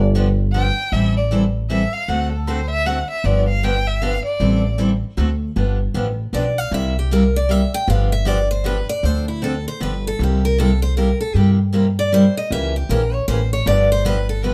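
Acoustic string swing in the jazz manouche tradition, this charming, swinging excerpt moves at 156 BPM in 3/4 with a lilting swung eighth-note feel in G mixolydian. An upright bass sits up front with a woody, growly pizzicato tone, while a picked steel-string acoustic guitar supplies bright accompaniment, its finger squeaks audible. A bowed violin takes the first solo from 0.5 seconds, singing with vibrato, a soft attack and expressive portamento before it stops at 4.7 seconds. A second picked steel-string guitar then carries the melody from 6.3 seconds, its fresh strings ringing out crisply over changes that pass through C7 and a C#dim7 before resolving to G7. Moderate studio reverb gives the close, forward-placed quartet a natural sense of space.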